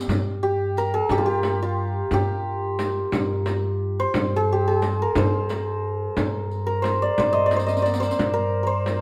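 A bright, shimmering santur rings up front, carrying a hypnotic, melancholic melody in a Persian modal style over a slow 6/8. Beneath it a woody pizzicato upright bass holds a single low note, while a small, band-limited frame drum played with hard hands and a distant riq with dark jingles keep the pulse, the drum breaking into a fill at 7.5 seconds. The ensemble plays live together in one room with moderate studio reverb, and this short passage is cut from a longer piece.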